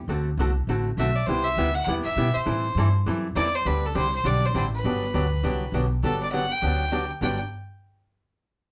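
Western swing country in G major, this playful, swinging fragment of a longer piece moves at a brisk 202 BPM with a lilting eighth-note swing. A woody, thumpy upright bass is plucked on gut strings from the start, and a clean, compressed hollow-body electric archtop guitar comps through D7, Cmaj7, Am7 and D7sus4 chords before settling on Gmaj7. At 1.0 s a single bowed fiddle takes the melody with a nasal, earthy tone and light vibrato, the trio sounding up front and live together in a modest studio room.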